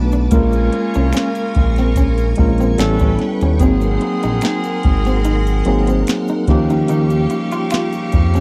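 R&B with a neo-soul lean, this short excerpt moves at an unhurried, lightly swung pace and feels introspective and smooth, drifting through Bbm7, A9, Ab9 and Eb9 chords. A clean tine electric piano sits up front, with a smooth, evolving synth bass carrying the low end and a soft vintage rhythm box supplying a deep kick, crisp snare and metallic hats. A lush string machine holds sustained chords with slow attack and ensemble chorus, while an electric guitar through a small old amp adds a slightly broken-up, picked second line with analog chorus from the background. From 0.3 seconds a clear, punchy saxophone section plays tight stabs that sound distant and roomy. Egg shaker and finger snaps sit far back in the mix, and the whole piece has the dry, close sound of a 1970s-style studio with little reverb.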